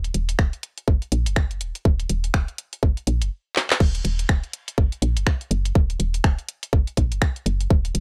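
Minimal techno at 123 BPM in Eb minor, hypnotic and clinical, with a swung 16th-note feel in this excerpt cut from a longer piece. A woody, round FM bass with a fast attack and dark decay pumps under sidechain alongside a garage drum kit of crash cymbal, finger snaps, handclaps and warm hi-hats, while a tight electronic kick, the most prominent part, enters at 0.4 seconds. Both drum parts are up front with a small-room character and little reverb overall, and a drum fill at 3.6 seconds leads into the drop at 3.8 seconds.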